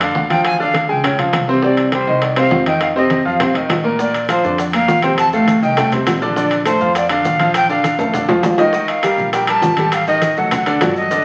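A straight 4/4 salsa groove at 203 BPM in Bb major drives this sunny, joyful excerpt, cut from a longer piece, with ringing metal-shell timbales, soft-handed low-tuned congas in the background, very quiet tight high-tuned bongos, and grainy maracas entering at 4.0 s, while a woody, thumpy pizzicato upright bass on gut strings holds the low end. Up front, a brilliant baby grand piano with audible action noise and short sustain accompanies through chords such as Bbmaj7 and F13, beneath a breathy, reedy metal flute melody with a crisp, chiffy attack and straight tone. A drum fill at 8.0 s leads into a new section over Ebadd9, all heard through a large, wet studio reverb and the crackle of a very old 78 rpm record.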